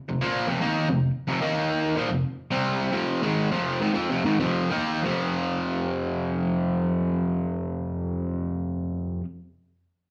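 A bright, overdriven semi-hollow electric guitar takes the solo up front from 0.1 to 9.2 s in this sunny, swaggering rock fragment cut from a longer piece, its picked, double-tracked hollow-body tone moving between F5 and Eb5 power chords in a straight 4/4. The tempo sits around 96 to 112 BPM, easing back between 0.5 and 5.0 s before a new section begins. A moderate large-studio reverb and a live-in-one-room feel give it space, with some lossy compression artefacts in the sound.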